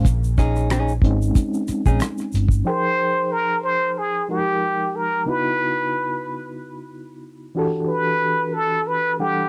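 A reedy electric piano with tremolo, cassette-tape colour and plate reverb opens this introspective, soulful neo-soul R&B excerpt over a cloth-damped, thuddy drum kit, round foam-muted fingered bass, faint egg shaker and finger snaps, and a dark, compressed hollow-body jazz guitar line, before the drums, bass and percussion stop at 2.6 seconds and a breathy plunger-muted trumpet takes a jazz-style wah-wah solo with scooped notes and light vibrato from 2.7 seconds over minor-eleventh chords, all captured as a home cassette recording in a booth with moderate ambience.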